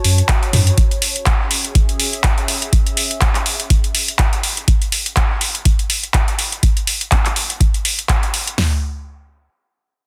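Acid house with a raw, hypnotic pull, cut from a longer piece and driven by two up-front analog drum machines with metallic hats and a tape-warm tone: one adds handclaps and toms, the other a deep kick, punchy snare and toms. A thick, saturated sub bass with sidechain pumping is heard only for the first 0.7 seconds. A warbling, detuned, lo-fi pad with chorus, reverb and sidechain pumping drifts in nostalgic haze over F#m and C#m before fading out by 4.7 seconds, leaving the drums alone in a dense, heavily limited digital ambience.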